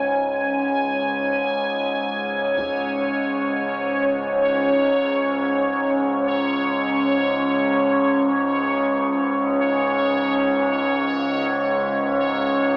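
Floating in free time, this cavernous, desolate dark ambient drone opens on a moody analog pad of detuned, wave-folded square and sawtooth tones with a sub octave, thickened by lush chorus, while a resonant sawtooth-and-sine drone of moving overtones fades in beneath it across the whole 12.8 seconds. Up front, a bubbling texture of random filter steps adds a detuned, resonant shimmer. At 2.6 seconds a very quiet, saturated taiko ensemble struck with hard sticks sounds briefly. The whole cut, taken from a longer piece, sits in a huge, wet reverb with an AM-radio colour.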